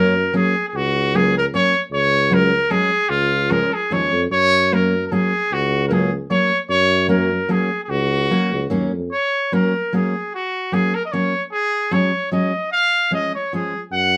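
A clear trumpet carries the melody over a dark, full-bodied fingerpicked steel-string guitar and a mellow tuba bass in this festive, jolly alpine folk dance, a short cut from a longer piece in lilting three-time with a gentle swing and a rubato feel. The trumpet and tuba both sound classical in style with vibrato and a roomy, distant quality, all set in a moderate studio reverb. The tuba drops out at 9.1 seconds as the opening strain repeats, and returns only briefly at 13.9 seconds just as the guitar has fallen away and the trumpet closes the phrase.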